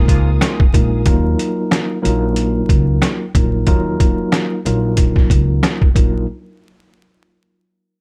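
A compressed, pitched-down sampler-style drum kit sits up front with a thumpy kick, medium-tuned snare, rim click and hi-hat, driving this moody, gritty boom-bap hip-hop excerpt at 92 BPM in Eb minor with a swung 16th feel. A mellow tine electric piano, clean and heard through its built-in speakers, carries the accompaniment alongside a woody, bright pizzicato upright bass. A lush bowed string section with vibrato hovers in the background until 1.0 s, as the harmony moves from Bb7sus4 to Ebmadd9 at 1.1 s, all over vinyl crackle and a dry overall sound.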